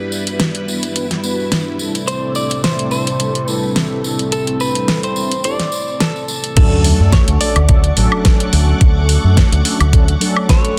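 A swung 4/4 nu-disco groove at 107 BPM in D major opens with dark, detuned synth brass and a lush, phased string machine pumping against the beat over Gmaj7 and C69 chords and an analog polysynth filter sweep, quickly joined by a distant tambourine and then an up-front pop drum kit of fat snare, metallic hats, crash and woodblock. A clean, compressed electric guitar carries the melody from 2.1 seconds through spring reverb and tape echo. At 6.6 seconds the groovy, feel-good cut drops to Dmaj7 with a thumpy, tape-warm electronic kick, a round envelope-filtered fingered bass and a very quiet sub drop impact, all within a dense, heavily limited modern master.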